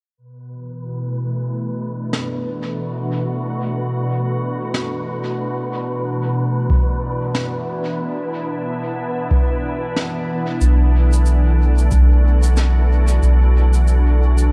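Ambient dub in B minor at 92 BPM with a light 16th-note swing, spacious and deep, cut from a longer piece that rests on a single Bm7 chord. A soft, organ-like pad with chorus and reverb sustains calm chords under a filter sweep through the first 10.6 seconds, while an airy, breathy wind-like noise texture hovers high above it, and a brushed snare and shaker with dub echo arrive at 2.1 seconds. An analog electronic kick adds depth from 6.7 to 12.1 seconds, and a round, up-front sub bass on B1 enters at 10.6 seconds, all within a dark, small-room ambience.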